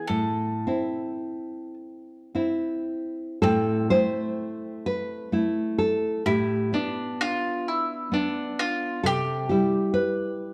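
A bowl-back mandolin picks a yearning, solemn melody on its double strings over a full-bodied, fingerpicked nylon-string guitar, both up front from the first moment of this short romantic duo in A minor, which moves in a slow, rubato 6/8 at 35-45 BPM through Am, G/A at 6.3 s and C at 9.0 s in a dark production with moderate recital hall reverb.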